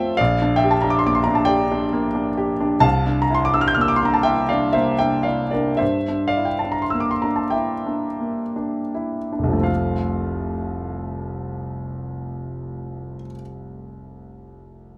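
A concert grand piano plays alone in this serene, nostalgic romantic nocturne in 12/8 with free rubato, its intimate, up-front tone carrying deep bass and audible action noise under light reverb as the music slows through Gm/Bb and C9 before settling on F at 9.7 seconds, where a new section begins in this fragment of a longer piece.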